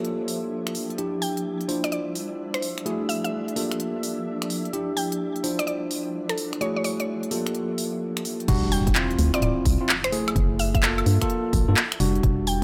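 The rhythm skips along in a swung two-step garage groove at 128 BPM in 4/4, driven by a crisp, up-front house kit of hi-hats, finger snaps, handclaps, woodblock and crash cymbal. The mood is soulful, built on a looping cycle of minor ninth chords (Gm9, Em9, Dm9, F#m9). Clean tine electric piano stabs carry dub echo, while a silky vintage string machine sustains chords in the background with ensemble chorus and sidechain pumping. From 1.2 seconds a woody, round mallet-like synth pluck plays the melody, thickened by chorus and dub echo. At 8.5 seconds the strings stop and the drop arrives, as a hollow, dark organ-like FM bass and a punchy, layered electronic kick come in alongside an impact set in the background. Light reverb and digital ambience surround this short cut from a longer piece.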